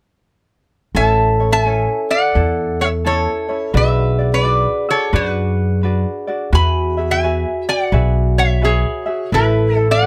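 Sunny and dreamy, this short Hawaiian passage in a gentle swung 4/4 sets a nasal, metallic lap resonator guitar played with slide and fingerpicks up front on the melody from 1.0 seconds, over a woody, growly pizzicato upright bass, a light fingerpicked ukulele and a mellow, ringing vibraphone struck with soft mallets as a second line, all moving from A through Bm and Eadd9 to Asus2 in a close, detailed sound with light reverb.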